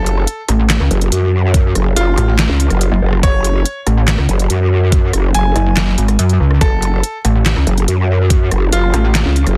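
A bright concert grand piano carries the melody with a dub echo over a growling, detuned growl bass with chorus and overdrive, opening this aggressive, heavy wobble dubstep excerpt at 142 BPM in a half-time feel, in F# harmonic minor over F#m. A dubstep drum kit of handclaps, hi-hat, rim click and a deep snare with crisp hats comes in at 0.1 seconds, a saturated, pulsing pluck wobble bass sits up front from 0.5 seconds, and an overdriven, knocking electronic kick drum enters at 1.5 seconds. The whole is set in digital ambience with a dense, heavily limited modern master.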